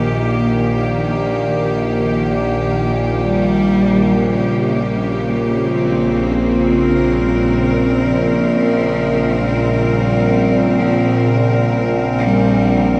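Dark ambient drone at 63 BPM in Bb dorian, unsettling and desolate: a resonant sawtooth-and-sine drone with moving overtones, chorus and its own reverb sits up front beside a bright, intense bowed cello section holding chords, while from 3.2 seconds a rich, focused solo cello melody with vibrato and diffuse delay sits in the background, fading in as the section fades out from 4.2 seconds over a shift from Eb to Bbmadd9, all inside a huge, dark reverb in this excerpt from a longer piece.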